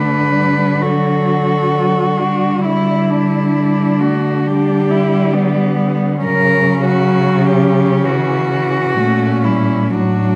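Four bowed cellos sound together from the opening moment in this tender, lyrical classical passage, cut from a longer piece and moving with a flexible rubato feel. The top cello carries the melody up front with an airy bow, light vibrato and an intimate softness of attack. Beneath it a second cello sings an expressive inner line with portamento, a rich-toned cello supplies the accompaniment, and a more distant cello anchors the bass, all set in a dark, lingering recital-hall reverb.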